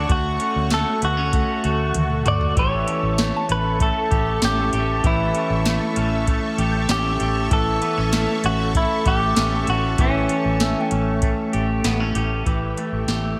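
Dream pop at 97 BPM in a straight 4/4, dreamy and blissful, this excerpt moves from Dmaj7 to A7 under a compressed, clean electric guitar melody bathed in tape echo, while a twangy, slightly broken-up electric guitar plays arpeggios through lush chorus and tape echo. A full, sawtooth string machine with cellos holds sustained chords with ensemble chorus, a dark, foam-muted fingered bass sits up front, and a soft vintage rhythm box with deep kick, crisp snare, metallic hats, tambourine and toms carries overdrive and a large-room character, with a drum fill at 1.9 seconds. A very quiet, pure FM synth bell with chorus and phaser adds texture from 1.4 seconds, all within a light reverb.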